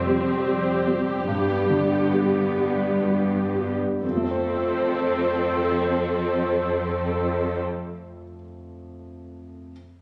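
Hopeful and moving, this slow, rubato cinematic excerpt in 6/8 and F lydian, slowing over its first 4.0 seconds, sets a concert grand piano of deep bass and long sustain beside a lush viola section singing with vibrato and portamento and a rich, smooth cello section holding the bass, all three starting together until the strings stop at 7.6 seconds and the piano rings on to 9.7 seconds, through chords moving from Fsus2 to G and settling on F within a moderate recital hall reverb, captured on a phone in the room with added studio reverb and compression.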